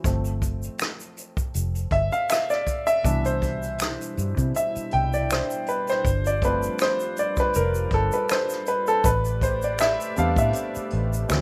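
A lightly swung 16th-note groove at 80 BPM in 4/4 carries this warm, sensual neo-soul R&B excerpt, where an up-front concert grand piano with deep bass and short sustain plays solo throughout, backed by a small-room brush kit with punchy kick, hi-hat and rim click, a dark, round, foam-muted fingered electric bass, close and dry egg shaker and finger snaps, and a smooth, detuned sawtooth pad with chorus that enters at 3.0 seconds, all in a rough home-demo mix with studio reverb as the chords move from G7sus4 to Cmaj9, back to G7sus4 and on to Am11.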